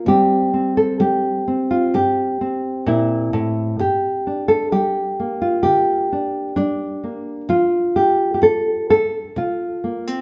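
Reflective and haunting, this slow folk fragment at 64 BPM in G dorian features a solo nylon-string guitar, dark and woody with the sound of old strings, played up front and moving from C to Gm at 3.8 seconds and F at 7.5 seconds within a large studio's moderate reverb.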